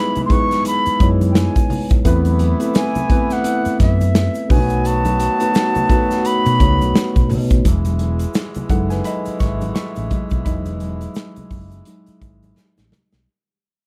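A dry recording opens on a lush 1970s-style soul groove at 86 BPM in E major, with a swung sixteenth feel and a reedy, airy flute carrying the melody over a mellow, slightly out-of-tune tine electric piano, lightly overdriven through a combo amp, and dark, distant horn stabs with octave doubling. Underneath, a punchy up-front studio kit, a round, hollow-body fingered bass entering at 0.9 seconds, very quiet ringing congas and a grainy egg shaker keep the pulse. The flute drops out at 7.3 seconds, and from 7.7 seconds the worn electric piano takes a solo as the piece fades out, ending on a short drum fill.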